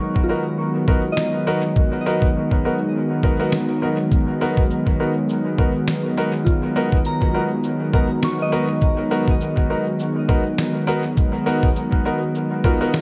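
A moderate echo chamber reverb gives this meditative, spacious ambient dub its roomy depth. Cut from a longer piece, it rests on a single G#m9 chord in G# dorian at 102 BPM in 4/4, with a gentle swing on the sixteenths. Up front, a detuned analog pad blending sawtooth and triangle waves sustains smooth, warbling vintage chords through a subtle chorus, while a pure FM synth bell traces mellow, decaying arpeggios higher up through chorus and tape echo. A thumpy, pitched-down kick enters at 0.2 seconds, compressed and muffled with a tape-tinged, sampler-style character in a small room reverb. A woody, intimate upright piano with audible action noise adds polished stabs with long sustain into dub echo from 0.3 seconds, and from 1.2 seconds a medium-tuned snare paired with cabasa joins, caught in both small room reverb and dub echo.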